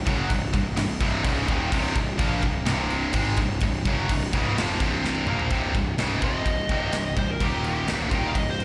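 Straight 4/4 heavy metal that opens in half time, this dark, epic excerpt pairs a double-tracked, up-front high-gain guitar riff with growly fuzz bass and a tight metal kit with bright cymbals, and after a drum fill the dusky high-gain lead guitar enters at 6.2 seconds for a solo, all heard as a live gig through the venue's PA with recital hall reverb.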